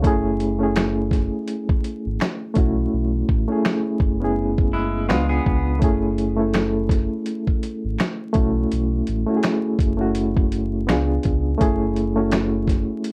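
A reedy, slightly out-of-tune electric piano sits up front in this melancholic, nostalgic lo-fi hip hop excerpt at 83 BPM in F# minor, its fast tremolo and cassette tape colour carrying a swung 16th-note feel over F#m9, B7sus4 and C#7b9 chords. A gritty, compressed sampler-style drum kit with a thumpy kick and medium-tuned snare sits beside a deep sine sub bass with octave, while barely audible finger snaps hover in the background and the hi-hats drop out from 2.9 to 5.8 seconds. A bright, clean semi-hollow guitar with tape echo appears briefly at 4.7 seconds, and the mix is bathed in light reverb, warbling old tape, vinyl crackle and pitch drift.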